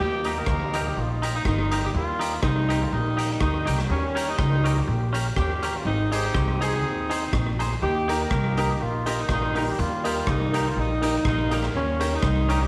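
Set in moderate echo-chamber reverb, this upbeat, bouncy ska fragment has a tight, vibrato-laden horn section carrying the melody up front with slapback echo, while a woody pizzicato upright bass anchors the lightly swung groove, a clean, picked semi-hollow electric guitar comps with its own slapback, a gritty, saturated garage drum kit pumps hi-hat, punchy kick and rim click, and a mellow, vintage upright piano slips in with background stabs at 8.1 seconds.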